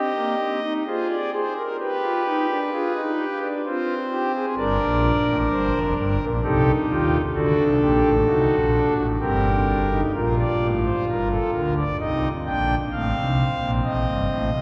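A pipe organ on its foundation stops carries this baroque-style four-part fugue alone from start to finish, its thick, romantic voicing spanning F1 to G5 and sitting up front. The mood is serious and contemplative, moving at an unhurried 65 BPM in 3/4 with a straight feel, tuned to A4 = 439 Hz. Harmony centres on C minor, passing through F minor, G, G minor and D, with a new section arriving at 10.1 seconds that returns to C minor before turning to F7 over A. A wet cathedral reverb with a 6.1-second decay surrounds the organ, and the instrument is heard from further back in the room, giving the counterpoint a vast, resonant halo. The recording is cut from a longer piece, ending at 14.6 seconds.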